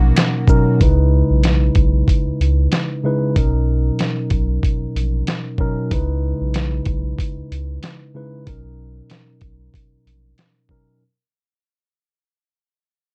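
Dark, dry production frames this soulful, confident boom-bap hip-hop excerpt, where a mellow tine electric piano with a cassette-tape tint alternates Bmaj7 and C#m9 chords over a deep, round sine sub bass and a muffled, pitched-down sampler-style kit with a thumpy kick and medium-tuned snare, while a smooth bowed string section with light vibrato sits faintly in the background only until 0.8 s, when the whole passage begins to fade out.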